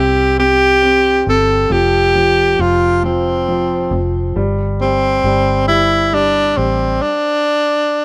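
Lightly reverberant small-room ambience gives this rough home-demo recording an intimate feel: a swaying, heartfelt pop ballad in 6/8 at 45 BPM, counted in dotted quarters, cut from a longer piece. A breathy, whispered tenor saxophone carries the melody up front with a soft attack, light vibrato and a touch of digital delay. Beneath it, a concert grand piano with open, long-sustaining tone and a dark, round, foam-muted fingered electric bass move through C5, Fsus2 and Gsus4 before both stop at 7.0 s, leaving the saxophone alone until 8.0 s.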